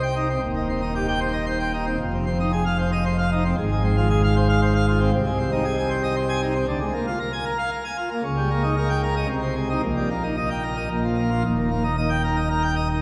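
A solo pipe organ on full plenum, its mixtures giving a brilliant, baroque voicing, drives this jubilant classical toccata at 114 BPM in 3/4, ranging from Eb1 to Ab5. The harmony passes through minor colours before settling into Eb major from 5.1 s and arriving on an Eb chord at 11.5 s. A wet church reverb with a long 2.7-second decay surrounds the instrument, heard from further back in the room in this short excerpt cut from a longer piece.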